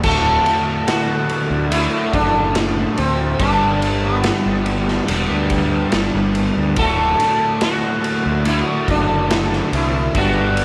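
Psychedelic rock with a trippy, hazy mood, this excerpt sets a buzzing, shimmering sitar melody with sympathetic strings over a bright, double-tracked overdriven guitar riff through a rotary speaker, a round fuzz bass up front, a gritty, saturated garage drum kit with a punchy kick in a pumping stone room, and a very quiet percussive tonewheel organ holding chords with key click and slow rotary, as the harmony moves between D and Gadd9 inside a moderate echo-chamber reverb.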